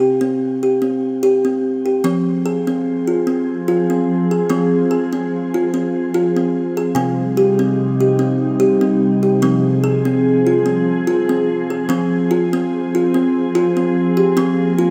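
At a steady 73 BPM in 3/4 with a straight feel, this hypnotic, meditative world piece for tuned percussion unfolds in F minor, tuned slightly sharp to A4 = 441 Hz. A kalimba opens alone on a bare C5 and plays arpeggios from C3 to Ab4 throughout. Its tone is woody and hollow with a boxy thumbnail pluck, short notes sitting up front and trailed by shimmer reverb. At 2.0 seconds a glassy, ethereal FM pad joins with sustained chords in the same range. The pad's slow attack, long release and warbling ensemble chorus give it a mellow, vintage character, layered with its built-in reverb and a shimmer reverb. The harmony moves from Fm to Cm at 7.0 seconds and back to Fm, a new section begins at 11.9 seconds, and the whole sits in a wet echo chamber in this passage taken from a longer piece.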